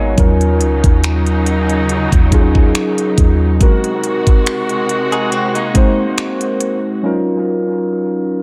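Late-night and sensual, this short cut of contemporary R&B is built on muted, felt-like synth keys sitting up front, shimmering with chorus and dub echo, over lush bowed strings holding sustained chords with a sidechain pump. A direct-recorded clean electric guitar picks arpeggios through its own dub echo, while a deep, boomy 808-style bass drops out at 3.6 seconds. A trap kit entering at 0.2 seconds brings a knocking kick, crisp hats and finger snaps into an echo-heavy digital ambience.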